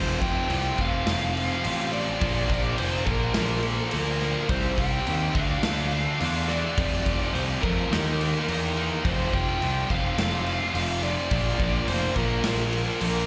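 A biting, dark-toned lead guitar with overdrive and tape echo carries the melody from the first second over a stack of three bright, distorted guitar riffs (two high-gain, two with slapback echo), a round, fuzzy picked bass up front and a punchy, big-room rock drum kit with bright cymbals entering at 0.2 seconds, all heard as a driving, heavy hard-rock excerpt at 106 BPM through a club PA with light reverb, moving from F through Bb, Cm and D, then on to F, Eb, F and Bb.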